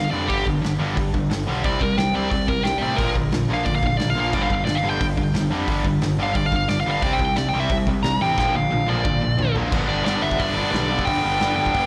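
Punk rock, rebellious and energetic, heard as a live club gig through the venue's PA: a dark, smooth, up-front overdriven lead guitar solos with slapback echo and delay until 9.7 seconds, over two bright picked rhythm guitars (one distorted and tucked into the background) and a growly fuzz bass, while a loose acoustic drum kit with punchy kick, dark cymbals and a pumping room sound enters at 0.3 seconds and plays a fill from 8.4 seconds.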